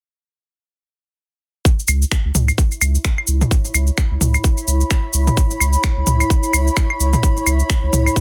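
A tight, up-front electronic kick and a grainy, bright tube shaker open this quirky, clinical minimal techno excerpt at 1.7 seconds; a deep, thick saturated sub bass with sidechain pumping, overdriven electronic claves and toms, and layered electronic finger snaps with soft clipping follow, and at 3.3 seconds a cloudy, evolving, slow-attack granular pad drifts in with its own reverb and pumping, all over a single minor-seventh chord, a swung sixteenth-note feel and a dense, heavily limited master with light reverb.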